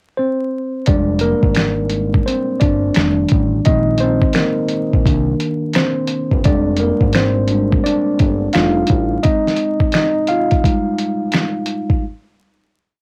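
A mellow tine electric piano opens this short, nostalgic lo-fi hip hop piece at 0.2 seconds, its worn, slightly out-of-tune tone colored by cassette tape as it plays a pickup in F dorian at 86 BPM. At 0.9 seconds a dusty soul sampler-style drum kit enters with a slumped, off-grid beat swung on the 16ths, its thumpy kick and fat snare layered with finger snaps, overdriven and roughened by 12-bit sampler grit, while a fat analog bass joins with a sparse, sustained line built from detuned sawtooth and square waves under a moving filter. The electric piano takes a solo role from that point, repeating rootless, pushed chords like a sampled loop through changes such as Fm69, F13, Cm9 and Ab6. The bass drops away at 9.2 seconds, leaving the up-front piano and gritty drums to carry the hazy mood through to the close. Light reverb, vinyl crackle and the feel of a home cassette recording wrap the whole in a faded, intimate glow.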